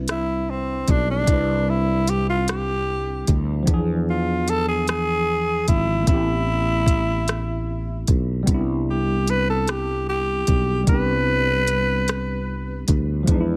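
A growling tenor saxophone leads this sensual, slow six-eight R&B excerpt at 50 BPM in C major, its raspy, gritty tone carrying light vibrato and a touch of plate reverb up front. Beneath it, a sustaining fretless electric bass adds a growly, direct low end, while a smooth, electronic drum kit with soft kick, rim click and silky hi-hat sits close and tape-warm. A worn, slightly out-of-tune tine electric piano, lightly overdriven as if through built-in speakers, murmurs in the background over chords moving from Cmaj9 through E7b9 and Am9 back to Cmaj9.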